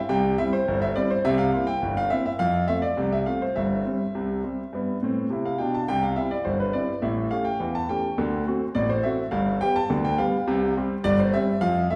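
A clear concert grand piano opens this jaunty, lively ragtime passage on its own, playing in C major at 104 BPM in a straight 2/4, tuned slightly high to A4 = 444 Hz. Sitting up front with a deep bass, a boxy tone, long sustain and audible action noise, it ranges from G1 to A5 through a progression from C and C7 to F, then on through A7, D7 and G before landing on C5 near 10.5 seconds. The church or concert hall around it adds a wet reverb, and the 12-second fragment is cut from a longer piece.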